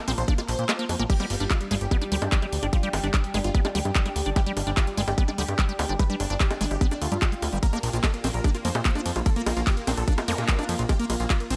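A tight, up-front electronic kick drives this alien, hypnotic psychedelic trance passage, cut from a longer piece, in a straight 4/4, dropping out briefly between 0.7 and 1.1 seconds before returning. Beneath it a fat, thick analog bass with a nasal, detuned sawtooth edge holds the low end, while a squelchy, resonant acid bass riff with chorus and digital delay runs above it. An overdriven big-room dance kit adds bongos, handclaps, hi-hat, ride and crash, and both the kit and the kick carry studio reverb. In the background a punchy, detuned supersaw stab carries the melody through phaser and delay, and an airy, breathy pad with a slow attack and long release fills out the texture. Several of these parts pump with sidechain compression: the stab, the pad and the acid bass. A very quiet, dark vowel-sweep wobble bass surfaces from 1.2 to 2.4 seconds and again from 7.7 to 10.7 seconds, and a brief electronic zap flickers near the end.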